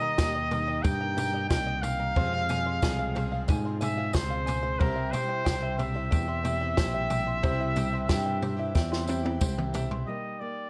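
Wistful and stirring, this 91 BPM indie folk excerpt moves through Eb, Fm and C in 4/4, with a clear, classical-style trumpet melody carrying light vibrato and plate reverb up front over a shimmering, octave-doubled picked twelve-string acoustic guitar, plunky fingerpicked open-back banjo arpeggios, a very quiet bright grand piano, a dark, round picked electric bass, a dry compact cocktail drum kit with high-tuned snare and tight kick, and a jingly tambourine in the background, as a drum fill at 8.8 s and a piano fill at 9.1 s lead to a fingerpicked steel-string acoustic guitar with finger squeak entering at 10.1 s.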